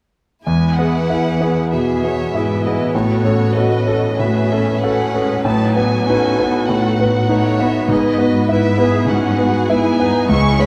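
A short section of a lyrical, passionate Romantic movement for piano and orchestra in E major opens at 0.4 s with a violin section singing a high, vibrato-rich melody, joined at 0.5 s by a clear, polished concert grand piano that carries its own melody up front, with deep bass and long sustain. Beneath them, a second violin line with soft attack and an intimate, close sound sits in the background, alongside an expressive, distant viola section and a background cello bass line marked by portamento. At a rubato 97 BPM in 4/4, the harmony moves from E through F#m/A and B7/A to E/G#, all set in a moderate scoring-stage reverb.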